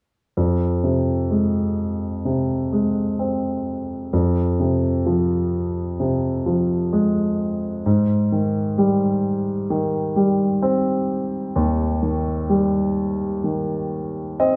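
This pop excerpt at 64 BPM in a straight 4/4 feels heartfelt and hopeful, carried entirely by a warm grand piano that sits up front with a short sustain, spanning Eb2 to Eb5 and tuned to A4 = 441 Hz. The harmony rests on Fm before moving to Abmaj7 at 7.9 seconds, and the piano closes with a brief fill from 13.9 seconds. A moderate, large studio reverb gives the live, single-room take a sense of space.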